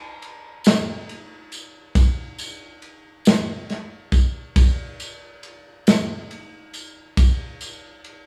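A moderate stone-room reverb and small-room ambience frame this short, reverent and soulful gospel passage in 6/8, where an up-front acoustic drum kit with a tight kick, medium-tuned snare and ride cymbal enters at 0.2 seconds, joined at 0.6 seconds by a jingly, close and dry tambourine sitting much lower in the mix.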